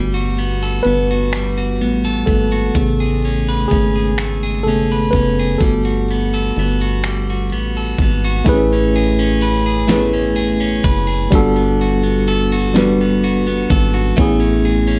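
Sensual and tender, this slow six-eight R&B piece moves at 42 BPM in A major, tuned slightly low, with chords swaying between Gmaj9 and Amaj9 under a light reverb. A worn, slightly out-of-tune tine electric piano carries the accompaniment and takes a solo through the first 8.5 seconds, while a bright, slightly broken-up electric guitar plays a picked, compressed second line, both set in plate reverb. Underneath, a rubbery, hollow square-wave bass with a dark, up-front filter pluck anchors the low end, and a produced electronic kit with knocking kick, fat snare, hi-hat and finger snaps enters at 0.4 seconds, carrying the sound of a small room.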